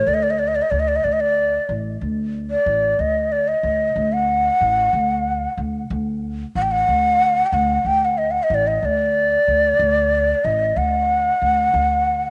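Persian modal ensemble excerpt in D dastgah chahargah, festive and passionate at 62 BPM in a straight 6/8 and tuned to A4 = 435 Hz, where a breathy, end-blown reed-cane ney carries the melody close-miked and up front with vibrato, a crisp attack and a cassette-tape color, over a woody, thumpy pizzicato upright bass on gut strings sitting lower in the mix, the pair set in light studio reverb with a homemade cassette character.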